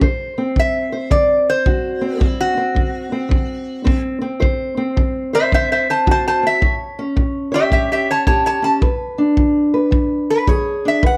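This is an acoustic country blues piece, a short excerpt with a laid-back, gritty mood and a swung 4/4 feel. A fingerpicked steel-string parlour guitar plays accompaniment throughout, sounding dark, woody and boxy with the character of old strings. Alongside it, a punchy kick drum played with brushes sits up front, mid-forward and rolled off at the top, in a small-room sound. At 0.6 seconds a lap resonator guitar enters with the melody, played with slide and fingerpicks and sounding bright, metallic and nasal. The harmony rests on D7 before moving to A7 at 6.6 seconds and E7 at 8.8 seconds, and light reverb gives the close, upfront parts a little air.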